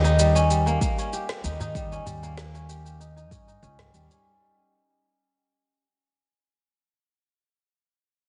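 A bright, fingerpicked kora rings out up front with arpeggios through a low-pass filter, digital delay and a filter sweep, leading this hypnotic, meditative organic downtempo fragment at 96 BPM over a D#7 chord, alongside a growly pizzicato upright bass pumping from sidechain compression, a very quiet, crisp metal-shell darbuka struck with hard hands, and an overdriven pair of electronic drum parts: a shaker with a woody snare, and a deep kick that enters at 0.8 s and stops at 3.4 s, as the whole mix fades out over its 4.2 s inside a moderate echo chamber and a heavily compressed, radio-like sound.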